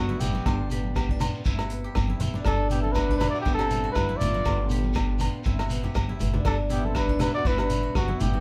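Highlife guitar band music at 120 BPM in 4/4 with a light sixteenth-note swing, this carefree, danceable excerpt sits in G major and moves through G7, Cmaj7/G and Gmaj7. An up-front, warm trumpet with light vibrato carries the jazz-style melody, while a raspy, gritty alto saxophone with its own vibrato plays a lower second line further back. Underneath, a fingerpicked old ladder-braced acoustic guitar adds dark, boxy accompaniment on old strings, a steel-string zither played with fingerpicks rings out silvery arpeggios, and a pizzicato upright bass holds a growly, woody G1. The vintage drum kit, with a punchy kick and a rolled-off top across hi-hat, kick and rim click, enters at 0.2 seconds alongside a grainy, distant shekere, while medium-tuned congas under soft hands and close, dry agogo bells sit in the background. A drum fill lands at 6.1 seconds, and the band plays live together in one room with moderate studio ambience.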